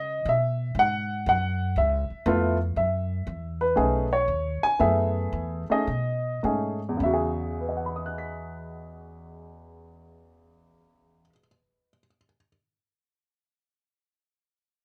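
A swung 4/4 pulse opens this relaxed, playful jazz passage, cut from a longer piece. The pulse eases into a slowdown between 2.8 and 7.0 seconds. A baby grand piano carries the melody across a broad span of its range. Its tone is dark and mellow, with short sustain, audible action noise and a natural, intimate character placed up front. Beneath it, a pizzicato upright bass on gut strings gives a woody, thumpy bottom, also close and present, and it drops out at 11.3 seconds while the piano carries on to the end. The harmony moves through colourful extended and altered chords, and light reverb adds a touch of room to the pair.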